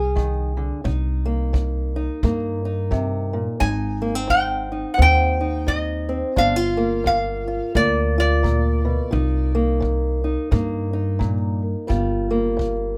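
Brooding and mournful, this short cut from a longer acoustic country blues piece moves at 87 BPM in 4/4 with a swung feel in C minor, its chords drifting from Fm7 and Cm7 through Abmaj7 and Gm7. A bright, nasal metal-body resonator guitar played with slide and fingerpicks carries the melody up front until 9.5 seconds, over a fingerpicked old ladder-braced acoustic guitar whose aged strings give a dark, boxy tone. A growly pizzicato upright bass and a tight, natural kick drum played with brushes anchor the groove, all set in light reverb.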